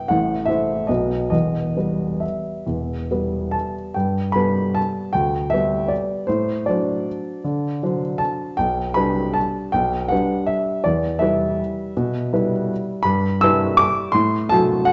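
A solo upright piano opens this classical waltz, its woody, intimate tone sitting up front with audible action noise and a vintage character. Played in a flexible, rubato three-beat lilt with an elegant, nostalgic mood, the fragment moves into a new section at 4.0 s and runs to 14.9 s, spanning deep bass notes to high treble. A recital hall's reverb surrounds the instrument, and the dark, mellow production keeps the sound soft-edged throughout.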